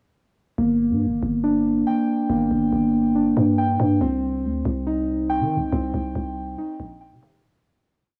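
A half-time 140 BPM pulse in 4/4 drives this dark and cold drill hip hop piece in G minor, where muted, felt-like synth keys with a soft, intimate tone, chorus and digital delay repeat a quarter-note arpeggio like a sampled loop from 0.6 seconds. Underneath, a growling, buzzy 808-style bass holds long sub-bass notes with pitch slides as the harmony moves from G minor to C minor. Light reverb and digital ambience frame the single hook, which fades out from 5.7 seconds.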